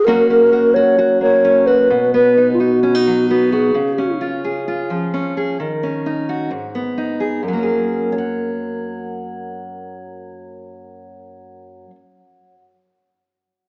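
A mellow wooden-headed alto flute carries the airy, vibrato-tinged melody with a crisp attack and rolled-off highs, sitting up front before it stops at 4.2 seconds, leaving a fingerpicked steel-string acoustic guitar to continue the accompaniment alone until 12.6 seconds. The guitar sounds full-bodied, with the fresh-stringed ring of a dreadnought, in this hopeful, uplifting folk fragment that moves from F# through B and C# into D#m7 and G#m before settling on F#add9 at 7.4 seconds. A moderate concert hall reverb surrounds the players, while worn, warbly cassette tape with drifting pitch and a small-speaker tone colors the recording.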